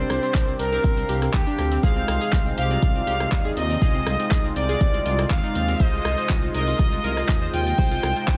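Progressive house at 121 BPM in 4/4, this expansive, dreamy passage drifts from Csus2 to Fm7/C, with a smooth, expressive sawtooth lead carrying the melody with vibrato, chorus, sidechain pumping and digital delay, shadowed by a very quiet, biting chamber violin section on a second line. Beneath them sit a lush, airy unison pad on sustained chords, a round analog pluck playing arpeggios with 12-bit sampler grit and tape echo in the background, glossy retro polysynth stabs under a phaser, and a dark, rumbling detuned saw bass that pumps with the sidechain. The deep house kit's handclaps, hi-hat and rim click join at 0.1 s, a grainy tube shaker at 0.2 s, and an up-front, tape-warm deep kick at 0.3 s, all set in a digital ambience.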